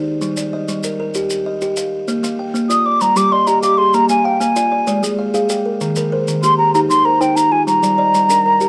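A buzzing, ringing kalimba opens this rippling excerpt of southern African traditional music, spinning mbira-style arpeggios in an interlocking 12/8 cycle, quickly joined by grainy, compressed maracas, then a softer second kalimba with mellow fingertip plucks in the background from 2.2 seconds, and an airy, close-miked wooden flute carrying the melody up front with vibrato from 2.7 seconds, the ensemble sitting in a small room with light reverb.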